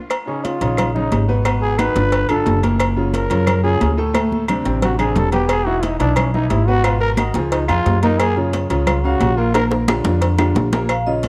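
A straight 4/4 groove at 178 BPM drives this sultry, sophisticated Afro-Cuban jazz excerpt, where bright, damped congas, tight cowbell and bongos, ringing agogo bells and timbales, and woody claves frame a raspy, growling trombone solo over a clear, boxy upright piano and an up-front pizzicato upright bass, with drum fills at 4.2 and 9.5 seconds before a mellow vibraphone enters at 10.9 seconds.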